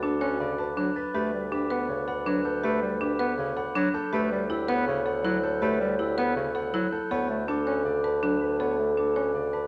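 A boxy grand piano melody opens this hypnotic, bright minimalist classical pattern piece at 161 BPM in 4/4, together with a distant French horn second line with light vibrato, woody, buzzing hard-mallet marimba and bell-like rubber-mallet glockenspiel arpeggios, and a smooth, mellow bassoon on a low D bass. An up-front, clear bass clarinet joins on the accompaniment at 0.2 s, while the harmony moves over D from D6 through Gmaj9/D and A13/D to Bm7/D in a wet recital hall reverb.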